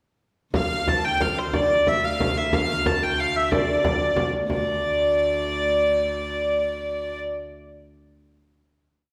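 A short, complete medieval dance in D minor at 122 BPM in 6/8 with an ancient, mysterious mood, led by a clear, earthy hurdy-gurdy playing a modal melody with ornaments up front, over a rich, floating viola da gamba drone on a low D with light vibrato and a soft attack, while a deep frame drum played with soft hands keeps an evenly spread pattern; the music settles onto a final note at 4.5 seconds, the drum drops out at 4.7 seconds, and the sound rings on in a reverberant church-like hall.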